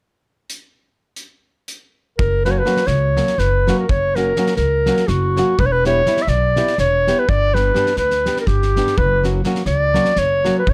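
Balkan wedding-band folk in a brisk 7/8 at 247 BPM (eighths), this bittersweet, virtuosic piece in F# phrygian dominant opens with a loose acoustic drum kit alone, its fat snare and punchy kick sitting in a pumping room with a rolled-off top. At 2.2 s a mellow, soft-attacked clarinet takes the up-front solo in classical style, joined by a thumpy pizzicato upright bass, also up front, and at 2.5 s by a dark, woody fingerpicked nylon-string guitar on old strings. The dry sound carries the harmony from F# through Em and G back to F#.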